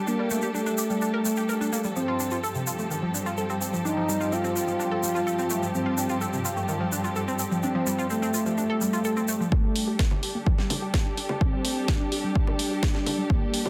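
A smooth, expressive synth lead with vibrato carries the melody in this dark, driving melodic techno cut at 127 BPM, over a bright analog pluck arpeggio with tape echo, sustained chords from a woody, distant string section, and a warbling lo-fi pad in the background, all pumping to the sidechain in a concert-hall reverb as the harmony moves between Gmadd9 and Fadd9/G; a grainy egg shaker keeps time until 9.5 s, when a punchy, up-front electronic kick and a house kit of congas, hi-hat and cracking snare arrive for a build-up with filter sweeps on the pluck and strings.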